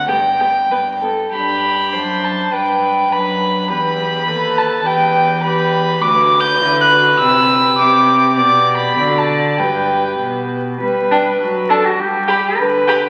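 Heard through the crackle of a very old 78 rpm record and a wet scoring-stage reverb, this short cut from a longer piece is a quick, spirited classical-period movement for string quartet in a straight two-four. The first violin carries the melody high in its range, sitting close and up front with an airy bow and a nasal, gut-string tone. Beneath it, the second violin plays a rich second line with light vibrato, while the viola fills in the accompaniment with a reedy sound that sits near the listener. The cello holds the bass from a distance, its bowed period-style tone warm and nasal. The lively harmony moves through G, D7/F#, Em and B7/D#, then returns to G at 12.0 seconds.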